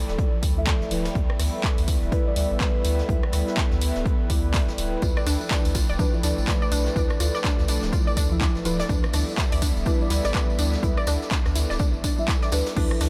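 A swung 124 BPM deep house groove in 4/4 is driven by an overdriven, up-front electronic kick, a punchy analog drum machine with claps, rim clicks, hats, ride and crash, and a very quiet brushed acoustic kit, while a round, dark analog bass pumps beneath it all. Hollow, flute-like pad chords and a warbling, nostalgic tape-like pad in the background wash over mellow detuned chord stabs with tape echo and phaser, moving between Dm69 and Em/D in a moody, deep mood. At 5.0 seconds a lo-fi, dusty pluck arpeggio and a jingly, distant tambourine join the mix, which sits in light small-room ambience in this cut from a longer piece.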